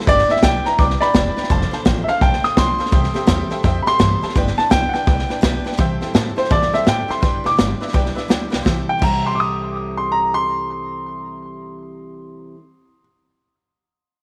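Rowdy and rollicking, this rockabilly excerpt swings along at 168 BPM in C major, with a clear, woody upright piano carrying the melody up front through tape echo, a jangly, metallic tack piano tucked in the background, a bright picked steel-string acoustic guitar with audible finger squeak, a dark, thumpy pizzicato upright bass, and a punchy vintage drum kit with a medium-tuned snare that throws in a fill at 8.5 seconds before dropping out at 9.1 seconds, the whole band sitting in small-room ambience with light reverb.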